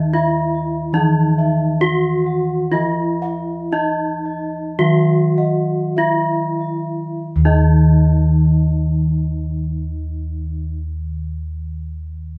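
In a straight, unhurried 4/4 that slows over the first 7.3 seconds, with the tempo moving within 44 to 77 BPM, this stately, shimmering passage of Javanese gamelan, cut from a longer piece, moves from an opening section into a second one. A bright bronze metallophone struck with a horn mallet carries the melody up front, its paired tuning producing airy shimmering beats, while a lower metallophone played with a wooden mallet gives boxy, ringing accompaniment. Bossed gongs with padded beaters add round, beating arpeggios and a mellow, soft bass, with a second metallophone's arpeggios sitting in the background, all blended by a wet studio reverb as a band playing live in one room.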